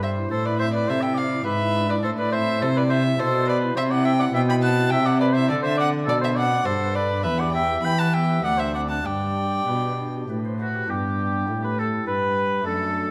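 In 3/4 at 103 BPM with a rubato feel, this radiant, dance-like baroque-style sonata movement opens on A minor harmony before settling into G major from 3.8 s, its chords moving through C, D and E minor to arrive on G. A rich, gut-string violin with light vibrato carries the melody above a roomy oboe second line, while a nasal, reedy period cello anchors the bass and a soft pipe organ with chiffy flute stops supplies the continuo, all four playing throughout. A moderate recital-hall reverb surrounds the ensemble, and a new section begins at 10.9 s just before this cut from a longer piece ends at 13.1 s.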